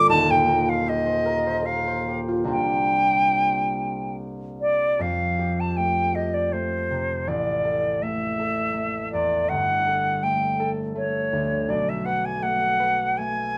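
Luminous and dreamy, this impressionist classical duo drifts in a rubato 3/4 at 70-83 BPM in F mixolydian, cut from a longer piece. The silver concert flute carries the melody between C5 and A5 with a pure, tongued tone and vibrato, while the concert harp accompanies with warm, ringing, thumb-plucked notes that reach as low as Eb1. Both instruments sit up front in a moderate studio reverb, with a second passage opening at 5.0 s on an Fadd9 chord and moving through shifting harmonies to a closing B5 at 11.7 s.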